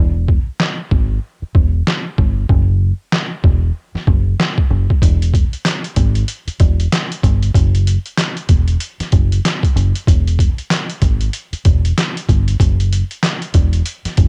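An overdriven, sampler-style drum kit sits up front, pitched down and muffled, with a thumpy kick, a medium-tuned snare, hi-hat and handclaps swinging over a gritty, dark boom-bap hip-hop groove at 95 BPM, cut from a longer piece. Beneath it, a deep, round electric bass, foam-muted and played with the fingers, holds the low end from the start, while the drums come in at 0.3 seconds and a break runs through the first 5.0 seconds. The dry sound has the character of a home cassette recording.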